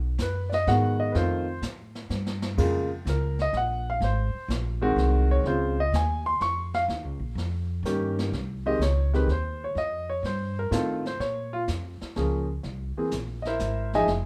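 The upright bass opens the excerpt, plucked pizzicato with a woody, up-front tone, joined almost at once by a clear concert grand piano carrying the melody and a jazz brush drum kit. This is a playful, warm jazz piano trio in 3/4 at 126 BPM, swinging its eighth notes in Ab major. The piano sits close and natural, with deep bass beneath its clear upper register, while the brushed kit sounds distant and roomy, with dark cymbals, a medium-tuned snare and a punchy kick. The drums add a brief fill between 2.1 and 2.6 seconds. The harmony moves through chords such as Bbm7, Ab7, Dbmaj7 and Eb7 before a second section begins at 8.3 seconds and closes on C7b13, all set in light reverb, as this cut from a longer piece ends at 14.3 seconds.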